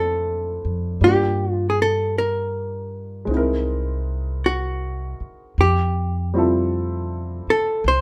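A hollow-body jazz guitar, baby grand piano and upright bass begin together in this tender, intimate jazz ballad, heard as a short passage cut from a longer piece. The guitar carries the melody with a dark, clean, picked electric tone, compressed and placed up front. Beneath it, the piano accompanies with a natural sound, short sustain and audible action noise, while the woody pizzicato upright bass on steel strings anchors the low end. At a slow 53 BPM in 4/4 with a swing on the eighth notes, the harmony in F major moves from Bbmaj9#11 through Gm7 and C7alt before settling on Fmaj9 at 5.6 seconds. A moderate club reverb gives the trio a close, intimate room sound.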